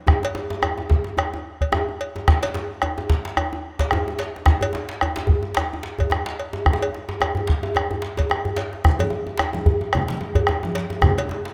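West African traditional drum ensemble music at 110 BPM in 4/4 with a swung sixteenth-note feel, festive and earthy, built on a round, up-front bombo, a soft-handed, medium-tuned djembe, a second tight, cracking djembe struck with hard hands, and a close, dry metallic cowbell, with a drum fill at 8.3 seconds and bright, thin-skinned congas entering at 8.8 seconds, heard as a rough home demo with light reverb and small room ambience in this cut from a longer piece.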